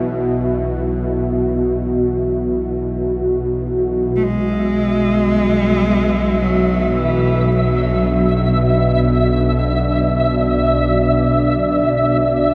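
A huge, wet reverb with a long tail surrounds this cavernous, unsettling dark ambient drone, which drifts in free time in B dorian and is cut from a longer piece. Beneath it all sits a bowed-like drone, string-like, tense and bright, placed up front with a noise layer, vibrato and its own reverb. A filter sweep moves across it from 4.2 s. A deep, moody analog pad holds sustained chords above it, detuned and softened with chorus, moving from an E5 chord to B minor. A dark cello, played by one bowed player up front, carries an expressive melody with vibrato and portamento between 4.2 and 8.3 s, trailed by tape echo. From 4.5 s a grainy, flickering granular texture hovers high in register, steeped in its own reverb.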